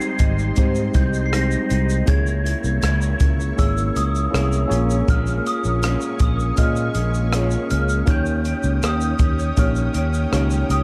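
A dark, lightly reverberant indie and bedroom-pop excerpt at 80 BPM in Ab major drifts in a nostalgic, hazy mood. A soft, bell-like glockenspiel played with rubber mallets carries the melody through ensemble chorus and analog delay, over a twangy, slightly broken-up guitar with analog chorus and warbly pitch drift, a worn, slightly out-of-tune tine electric piano, and vintage sawtooth string-machine cellos sustaining in the background, while an up-front small-room cocktail kit with punchy kick, rim click, hi-hat and shaker is joined by a growly fretless bass at 0.2 seconds.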